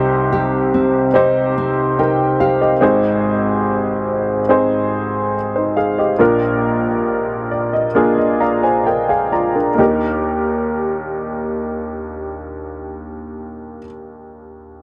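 Tender and heartfelt, this short pop excerpt sits at a slow 64-72 BPM in 4/4 with a straight feel, centered in Eb major. A bright upright piano carries the accompaniment for the whole 14.8 seconds, its worn, slightly detuned tone sitting up front with audible action noise and long sustain. A nylon-string guitar plays fingerpicked arpeggios only at the opening, ending at 3.4 s, its full-bodied, deep classical sound carrying a touch of finger squeak. The harmony moves from Cm through Ab and Bb, and the tempo slows from 2.8 s; from 7.1 s the piano plays a fill that arrives on Eb at 9.8 s, where a new section begins. The whole has the dry, close intimacy of a 1970s-style studio with light reverb.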